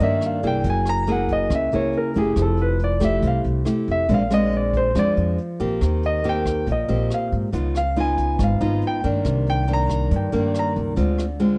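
A warm grand piano carries the melody with a slapback echo until 10.7 seconds in this smooth, melancholic bossa nova excerpt in C minor at 140 BPM, set over bright, fingerpicked nylon-string guitar, woody, thumpy pizzicato upright bass and a softer brushed jazz kit of hi-hat, punchy kick and rim click, all captured in a dry, close 1970s-style studio sound.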